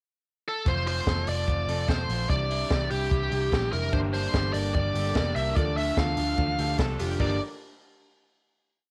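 Jangly indie pop with a bittersweet, restless mood, in which a distorted, up-front bluesy lead guitar with slapback echo plays hook phrases from 0.5 s over a driving eighth-note foam-muted bass, a compact cocktail drum kit with a punchy kick and off-beat open hats, a raw garage guitar strumming barre chords in the background, and a twangy, fingerpicked guitar through a small old amp with spring reverb, while glossy chorused retro synth keys with phaser join at 3.9 s before the piece arrives on a final chord at 7.2 s.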